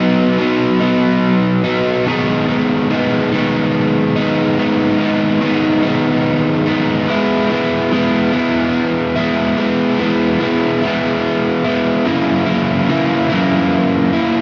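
Rock in a slow 6/8 at 48 BPM, counted in dotted quarters, this hopeful, cinematic excerpt in E lydian features a lone overdriven electric guitar, picked and double-tracked, sitting up front with a bright edge and a tape echo trailing its lines. The guitar plays alone across the full 14.4 seconds, ranging from F#2 to E4 over a progression that moves from B through G#m/B to E at 7.1 seconds and lands on F#7 at 12.1 seconds. Light reverb and a dark, warm production frame the part.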